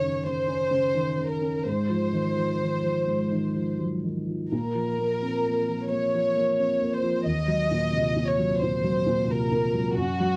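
A close, intimate chamber violin section plays a soft-edged sul tasto melody with light vibrato over a dark, boxy concert grand piano with deep bass in this melancholic, reflective neoclassical piece at a rubato 87 BPM in 4/4, moving from Gb5 through Fm7/Ab and Bbmadd9 to Ebm, all colored by a moderate studio room and the worn, warbling pitch drift of old cassette tape in a brief passage cut from a longer work.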